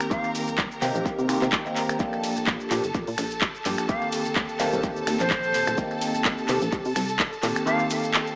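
Swung 16ths at 127 BPM drive this funky, groovy filtered disco house excerpt in C dorian, where a punchy, layered electronic kick with small room ambience sits under an up-front house kit of finger snaps, handclaps, metallic hats, ride cymbal and shaker that pumps with sidechain and tape echo, a very quiet, close and dry tube shaker adds texture, a plucky, wave-folded analog bass with tube saturation and a gritty, barky overdriven reed electric piano through a combo amp with fast tremolo, phaser and tape echo carry the Cm7, Bb6, Eb6 changes, a lush symphonic violin section holds intense vibrato chords, and an airy, slightly unsteady silver concert flute makes a brief entry at 0.1 s before taking the melody from 3.9 s to 7.9 s, set in an echo-heavy mix with light reverb and a small speaker sound.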